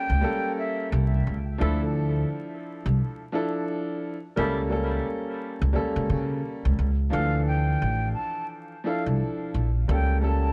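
A breathy concert flute with a soft attack opens this tough, reflective hip hop excerpt, sounding briefly over a boxy grand piano that carries the accompaniment throughout with a cassette-tape tint. An up-front upright bass enters almost at once, its pizzicato steel strings sounding woody yet bright, and it sits loudest in the mix beneath a swung sixteenth-note feel. From 1.6 to 4.6 seconds, a distant, roomy saxophone section adds jazz-style stabs with vibrato, filtered and touched by tape echo. The close-miked flute returns with its straight tone at 7.1 seconds for the second section, again filtered and washed in tape echo. The harmony moves between a minor add-nine chord and a dominant chord with a flat nine, all set in a small room with a dark, warm production and a layer of vinyl crackle.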